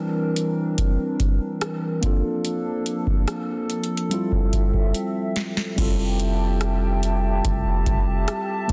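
A booming, dry analog drum machine with a deep kick, tonal snare, metallic hats, rim clicks and crash sits up front in this moody, sensual contemporary R&B piece at 72 BPM, over a clean, mellow tine electric piano and a hollow, flute-like pad with chorus moving through C9, Bbmaj7 and Fmaj9, with a drum fill at 4.9 seconds before a deep, sine-toned 808-style bass enters at 5.8 seconds, all in light reverb and a dense, heavily limited master.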